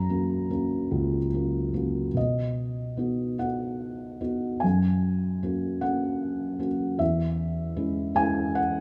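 This is a lyrical classical piece for solo piano, a brief cut from a longer work, peaceful and tender in mood. It moves slowly in 6/8 at around 48-52 BPM counted in dotted quarters, with a rubato feel, in B major. A felt-muted upright piano plays alone throughout the 8.8 seconds, ranging from C#2 to A#5, its tone soft, dark and intimate with the thick felt giving it a smooth, vintage character. The piano sits up front in a small room with light reverb. The harmony rests on F# at the start, moves to B at 2.2 seconds as a new section begins, returns to F# at 4.6 seconds, and ends on C#m/E at 7.0 seconds.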